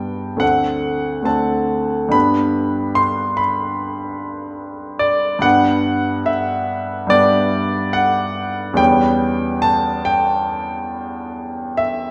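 Wistful and yearning, this romantic nocturne for solo piano unfolds at 71 BPM in 4/4 with a rubato feel, cut from a longer piece. A clear grand piano carries everything across the full 12.1 seconds, ranging from D2 up to C6. Its tone is intimate and present, set up front with long sustain, and the sound of the instrument's action can be heard beneath the notes. The harmony moves from D7 to G by 2.1 seconds, then turns toward C#m7b5/E at 8.8 seconds. A moderate concert hall reverb, with a 2.0-second decay, surrounds the piano with the air of a church or concert hall.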